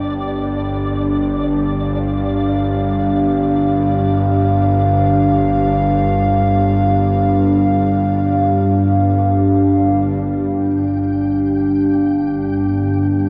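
A dark, detuned analog pad with chorus holds sustained chords over a G5 harmony. Beneath it, a tense, string-like bowed drone with vibrato fades in across the first 10.2 seconds, while a faint flickering, grainy granular texture fades out. At 10.2 seconds a filter sweep moves through the drone, and the whole ominous, vast fragment of free-time dark ambient sits in a cathedral reverb with its top end capped at 7.7 kHz.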